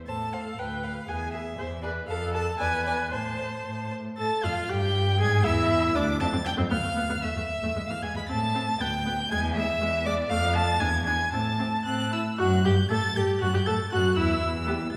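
A string quartet opens together at 0.1 seconds in this urgent, stormy, rubato classical-period movement in 2/4, cut from a longer piece. The first violin sings a rich, smooth, even melody with vibrato high above a dark second violin, whose soft attacks and expressive portamento shape the inner line, while a warm viola accompaniment and a focused, up-front cello bass complete the texture, all heard from further back in a reverberant recital hall.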